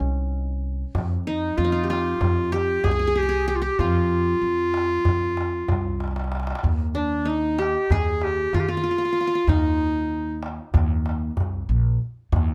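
Turkish makam ensemble music in 9/8, moving briskly at 190 BPM counted in eighths with a straight feel, its mood soulful and melancholic. A clear, close-miked clarinet carries the melody up front in a classical solo style, touched with plate reverb, while a qanun played with fingerpicks adds a bright-edged second line from its triple strings. Beneath them a woody, growly upright bass plucks pizzicato on steel strings, dark and prominent in the mix. A large, deep clay-shell darbuka with a natural skin joins at 0.9 s, struck with hard hands and sounding distant, as if set back in a large room. The opening section sits in F makam nihavent, and after a drum fill the music moves to Eb makam rast at 6.6 s. The clarinet drops out at 10.4 s and the qanun soon after, leaving bass and darbuka to carry this fragment of a longer piece to its close under a light overall reverb.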